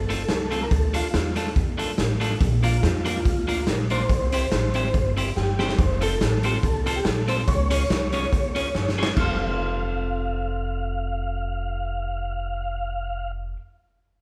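A lightly swung 4/4 ska groove at 142 BPM drives this cheerful, upbeat clip in F major, with a punchy, gritty garage drum kit up front, touched by tape echo, marking fills around 5.4 and 8.7 seconds before dropping out at 9.3 seconds. A woody, growly pizzicato upright bass anchors the low end while a slightly broken-up, compressed electric guitar fills in the accompaniment. Above them, a mellow, flute-like tonewheel organ carries the melody through chorus vibrato and a fast rotary speaker, all set in a moderate large-studio reverb that gives the feel of a band playing live in one room.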